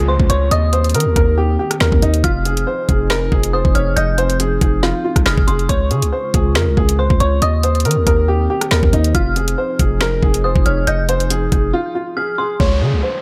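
Drill hip hop in F minor at 139 BPM with a half-time feel, this short cut from a longer piece sounds cold and tense. A dark, worn baby grand piano carries the melody up front, boxy and intimate with audible action noise and a short sustain, its tone softened by a low-pass filter, over a deep sawtooth-and-triangle analog pad that sits in the background with chorus and phaser. An eerie, inharmonic FM bell plays a high second line with chorus and delay, while a heavy, aggressive 808-style bass with a noise layer and distortion strikes with a fast attack and decays beneath it. The drill kit is up front and tape-warm, with a knocking kick, woody snare, bright hi-hats, rim clicks and finger snaps, re-recorded in a small room. The chords cycle through Dbmaj7, Eb6 and Fm7, a downlifter sweeps in at the start and again at the close, and after a break at 11.7 seconds the hi-hats drop out at 12.6 seconds as the piece lands on Db5, all set in light digital ambience.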